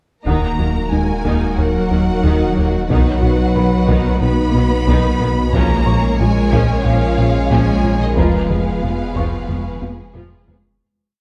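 Futuristic and vast, this short cinematic cue blends orchestra and electronics in a straight 4/4 at 91 BPM in Eb minor, moving through Ebm, B, Bbm7 and Fdim. A lush symphonic violin section carries the melody with vibrato and portamento, while a second studio violin section sustains chords behind it, distant violas drive a rhythmic ostinato, and cellos double the tune at the octave. Beneath them, a very quiet double bass ostinato joins a punchy sine sub bass with a pitch-drop attack and a rubbery, resonant square bass pulsing in the background. A tight, detuned sawtooth sequence with chorus and phaser pulses quietly, a hollow, flute-like pad breathes sustained chords, mellow French horns add slow swelling chords, and a felt-muted upright piano drops sparse, intimate single notes with audible action noise. Heavy-stick taiko drums with a vintage, band-limited tone pound a big ostinato very quietly, closing with a fill from 9.8 seconds as the whole piece fades out from 8.2 seconds. 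The dark production sits in a concert hall reverb with a 1.8-second decay.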